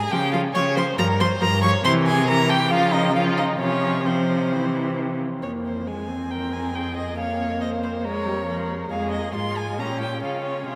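Cheerful and spirited, this quick classical-period string quartet passage in F minor at 137 BPM places a rich, up-front first violin on the expressive melody with vibrato and portamento over a focused, up-front cello bass line, while a more distant second violin carries a second line and a distant, soft-attacked viola supplies expressive accompaniment from 0.1 s, the quartet bathed in the long, echoing reverb of a vast cathedral.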